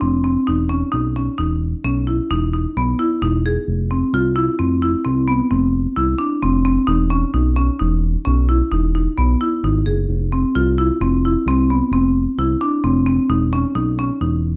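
A marimba played with hard mallets sits up front, its woody, bright bars spinning arpeggios between B3 and G#4 through the whole 14.5 seconds of this cut from a longer piece. This is restless, playful contemporary chamber music in 7/4 at 131 BPM, with a straight feel. Underneath, a smooth synth bass, also up front, holds low notes from E1 to C2, its sawtooth and square-wave tone shaded by ring modulation, with a fast attack and long sustain. The harmony swings back and forth between an open E major seventh chord and an F power chord, shifting roughly every 3 seconds. Light reverb and a dark, warm production wrap the pair, keeping the marimba's percussive, airy strikes close and vivid against the low, sustained bass.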